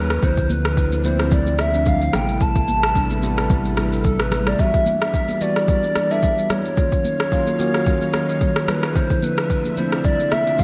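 Set at 110 BPM in 4/4 with a 16th-note swing, this soulful, deep amapiano excerpt rides a smooth, overdriven R&B drum kit of soft kick, rim click and shaker up front, with very quiet, high-tuned congas joining at 0.5 s and a thick, saturated sub bass that drops out at 4.6 s. A hollow, woody clarinet-like synth lead with vibrato, chorus and digital delay carries the melody over a bell-like tine electric piano and a mellow, sawtooth string machine of cellos pumping softly in the background, moving through Dm9, Am9, Em9 and D#m9. The bright 1980s-style digital production sits in a lush hall reverb, with gated reverb on the drums.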